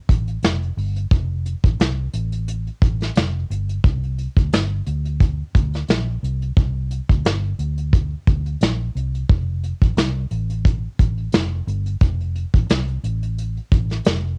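Brushed drums and a muted electric bass come in together at 0.1 seconds, setting up a nostalgic, laid-back groove of indie and bedroom pop in F major. The tempo sits at 88 BPM in 4/4 with a gentle swing on the sixteenths, giving the short excerpt an easy, unhurried sway. The soft kit uses brushes on a medium-tuned snare, with a tight kick and hi-hat, and sounds smooth and small-roomed with a rolled-off top. Up front beside it, the fingered bass stays low between F1 and D2, its foam-muted tone round, punchy and amped, with a touch of tube saturation adding a vintage grit. Captured at home on cassette with little reverb, the recording feels intimate and close, and both parts carry on together until about 14 seconds.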